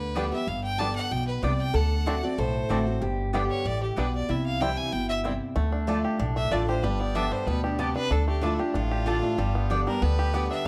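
A clear, biting fiddle carries the melody in this joyful, rustic bluegrass excerpt, bowed by a single player with light vibrato and an intense, boxy edge. The tempo is a brisk 189 BPM in straight 4/4, and the harmony moves through G, D7, C, Dm and Gadd9 across two passes of the same section. A metallic, nasal lap resonator guitar, played with slide and fingerpicks, adds a second line, stops at 5.4 seconds and returns only at 10.7 seconds. Beneath them, a bright, full-bodied dreadnought guitar picks the accompaniment, while an upright bass, played pizzicato with a woody tone, sits up front. Just after the start, a twangy, percussive banjo plays arpeggios with fingerpicks, and a double-strung mandolin adds picked stabs. The production is dark and warm, with light reverb.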